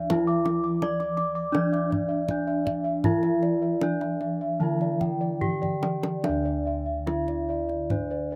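A ceremonial, shimmering passage of Javanese gamelan opens with all the bronze at once: an up-front metallophone rings out the melody under wooden mallets with a slapback echo, while high bossed gongs and a second metallophone in paired tuning play airy arpeggios full of beating shimmer. Beneath them, low bossed gongs struck with padded beaters carry a round, mellow bass, and a soft, close-miked metallophone played with padded disc mallets adds a dry, full accompaniment until it stops at 6.2 seconds. A deep, acoustic kendang sits close and up front throughout, with a drum fill from 5.4 to 6.2 seconds leading into a new section of this outdoor recording, which is cut from a longer piece.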